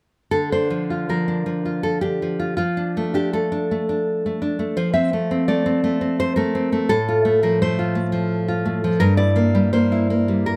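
A nylon-string guitar, full-bodied and up front with fresh strings, plays alone in this wistful, passionate romantic excerpt in D minor, moving with a rubato 3/4 sway at 76-87 BPM from Dm through F to Edim/G, captured by close, detailed microphones in light reverb.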